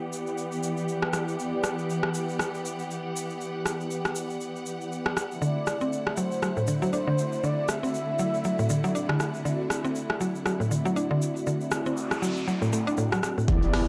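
This driving, spiritual afro house excerpt opens on lush, bowed string chords pumping under a low-pass filter, alongside round, detuned synth brass stabs with chorus and tape echo and a grainy tube shaker. A tape-warm deep house kit of hi-hat and rim click soon joins up front with a lightly swung feel, and at 5.4 s the harmony moves from Em7 to D9 as a woody, bright mallet-like pluck adds sidechained arpeggios and an expressive sawtooth lead carries a brief melody laced with vibrato. An electronic noise sweep starts at 11.9 s and ends in an impact, and at 13.5 s a deep, layered kick and a smooth bass sitting in the background land just as the fragment is cut off, all set in a moderate plate reverb with a dark, warm production.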